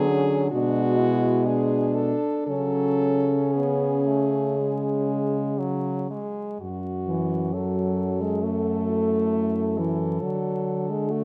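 Solemn and melancholic, this classical excerpt for horn quartet moves at a slow, rubato 56-68 BPM in 4/4 and F# minor, with four French horns playing together from 0.0 to 11.2 s. A close-miked, mellow horn sings the melody over a warm second line, while another mellow horn, given light vibrato and a distant, roomy quality, sits up front in the accompaniment beside a dark, equally forward bass horn. Harmonies drift from D through G#m7b5/B and C#sus4, reaching F#m at 6.6 s and returning to D at 10.2 s, all framed by light reverb, close and detailed microphones, and vinyl crackle.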